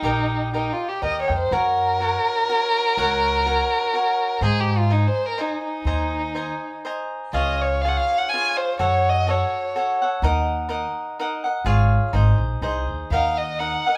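Mexican folk in a mariachi vein, this festive and romantic fragment of a longer piece moves in a lilting triple metre with a light swing and a rubato feel. A single bowed violin carries the melody up front, its dark, woody tone played sul tasto with vibrato and a smooth top. A bright, crisp cavaquinho picks out the accompaniment for the whole passage, and a growly upright bass with steel strings plays pizzicato underneath. Around 7.3 s the harmony shifts into a second section, where minor chords lend the romance a shadowed tint. The violin pauses at 10.0 s and returns briefly at 13.1 s, while the whole small band sounds close together in one room with a light touch of reverb.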